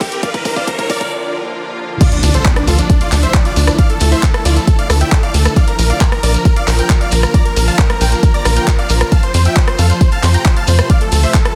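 Uplifting trance at 135 BPM in D minor, this soaring, bittersweet passage is cut from a longer piece and opens on a short build-up, with a drum fill, a riser and a filter sweep before a brief break at 1.1 seconds gives way to the drop at 2.0 seconds. A huge, euphoric supersaw lead carries the melody from D4 to Bb5, its detuned unison sawtooth tone bright and compressed, pumping against the kick and trailed by a digital delay. Beneath it, a shimmering, ethereal pad holds sustained chords with a slow attack, octave-up shimmer and a warbling, vintage chorus, moving through Bb, Dmadd9 and F. The punchy, tape-warm electronic kick sits up front alongside a layered house kit of crash, handclaps, hi-hat and rim click, with pumping hats and cymbals and a softly clipped snare, while an electronic riser and impact sit in the background. From the drop, a tight, driving sequencer bass with a plucky sawtooth and square-wave attack pushes the low end between Bb1 and F2, and a grainy, distant shekere adds texture far back in the mix. 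The dry, dense master is heavily limited and loud.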